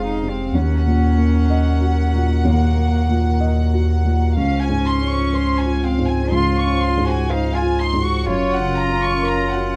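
Light reverb surrounds this short neoclassical excerpt for piano and strings, and its fragile, longing mood unfolds at a slow 62 BPM in 4/4 with a rubato feel in Eb dorian. A felt-muted upright piano carries the accompaniment across its whole length, its thick felt lending a dark, mellow tone with audible action noise. Above it, a violin section sings the melody between Db5 and Db6 with a floating, pure sul tasto sound, while a single cello plays a smooth second line in the middle register. A close, intimate chamber string section holds sustained chords in the background with light vibrato, and a round, deep sine sub bass sits up front beneath them all. The harmony drifts from Dbmaj7/F through Ebm7 and Dbmaj7 before settling on Gb at 8.3 seconds, just ahead of the cut at 9.8 seconds.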